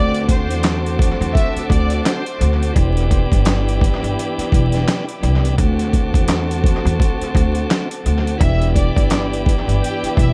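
This boom-bap hip-hop excerpt opens with a clear, focused violin section carrying the melody over a piping tonewheel organ, a woody pizzicato upright bass and a smooth, reedy string section holding sustained chords in the background, with the gritty sampler-style drum kit entering at 0.1 seconds. At 85 BPM in 4/4 with a 60% swing on the sixteenths, the groove in E minor feels reflective yet tough, moving between D7 and Em7. The drums sit up front, overdriven and compressed, with a thumpy kick, a medium-tuned snare, hi-hat and handclaps that sound re-recorded in a small room. The bass is also up front, its gut strings giving a thumpy, acoustic low end, while the organ's vibrato and scooped tone fill the middle under dub echo. The distant violins drop out at 2.4 seconds and return at 8.4 seconds, and the whole mix is soaked in echo and vinyl crackle within a small room ambience.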